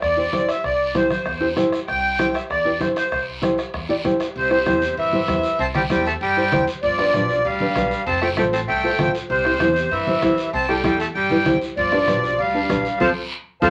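A small, wet room gives this joyful, danceable cumbia excerpt in C major a close, lively sound at 194 BPM, with a sweet, reedy accordion up front carrying the melody from the start, a thumb-plucked nylon-string guitar accompanying from 0.2 seconds, and a woody, growly upright bass underneath. Raspy guiro, thick-skinned congas and a soft-beater bombo in the background drive the groove. At 4.4 seconds a gritty, growling tenor saxophone enters with a second line, and the band hits an accent at 13.0 seconds on the move to F.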